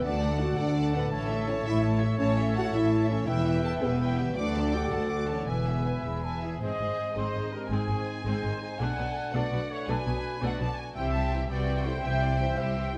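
A lush violin section carries a soaring, vibrato-rich melody from the start of this heroic cinematic passage in 6/8, over a second violin line, smooth violas, a hollow, airy flute, a clear oboe and a mellow clarinet. Dark French horns hold sustained chords while a very quiet, ringing harp plays arpeggios, and rich cellos and woody, distant double basses anchor the bass. At 6.4 seconds the oboe and clarinet drop out and a roomy trumpet section enters up front with stabs, all set in a moderate stage reverb.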